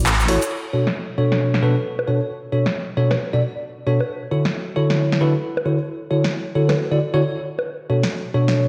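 A grainy egg shaker and an overdriven, up-front house kit of bongos, handclaps, filtered hi-hat, crash cymbal and a cracking snare strike a band accent at 0.1 s before the shaker drops away at 0.5 s, and from 0.3 s a clean, bell-like tine electric piano with lush chorus and analog delay plays stabs between B2 and D5 over Dmaj7 and Bm7, giving this moody, late-night two-step UK garage excerpt in B minor at 134 BPM, swung at 62% on 16ths, a dreamy hall reverb of 1.6 s.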